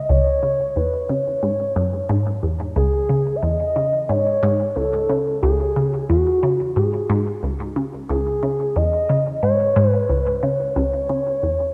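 A straight 4/4 pulse at 90 BPM carries this mysterious, expansive ambient passage in C# minor, cut from a longer piece and running about 11.7 seconds. A juicy, squelchy pluck with a resonant filter, detuned pulse and sawtooth tones and a noise layer sits up front, playing a low riff from C#2 to C#3 colored by phaser, subtle chorus and delay. Above it, a smooth, expressive sawtooth lead with vibrato, chorus and delay sings a mellow, sustained melody between F#4 and E5, and both parts are bathed in a wet plate reverb with a 3.7-second tail.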